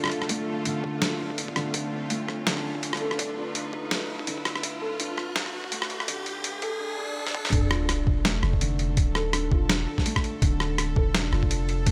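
A swung, half-time drum and bass groove sets a heavy, spacious mood as a gritty, pitched-down boom bap sampler-style kit of hi-hat, rim click, snare and toms sits up front beside a thumpy electronic kick, while a deep, sine-toned 808-style bass sustains underneath, a bright, string-like bowed drone holds tense chords with sidechain pumping, and a muted felt piano with audible action noise plays delayed arpeggios under a filter sweep through the build-up, as an electronic riser and swell climb toward a drum fill at 7.3 seconds and the drop lands at 7.5 seconds with an impact and sub drop in this excerpt.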